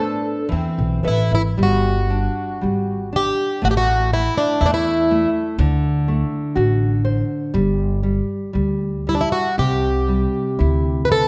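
Mournful and passionate, this excerpt from a fado-style ballad moves at a rubato 60 BPM in 2/4 with uneven beats, its chords drifting from Amadd9 through G5, A5 and D7 to Cadd9. Up front, a fingerpicked, plugged-in twelve-string acoustic guitar carries the shimmering, octave-doubled melody with a boxy swing. It falls silent at 5.3 s and returns at 9.1 s, while a second ladder-braced twelve-string adds a brief line with finger squeak at the opening. A dark, full-bodied classical nylon-string guitar accompanies throughout, and a woody, growly pizzicato upright bass enters at 0.5 s, all set in a moderate recital hall reverb.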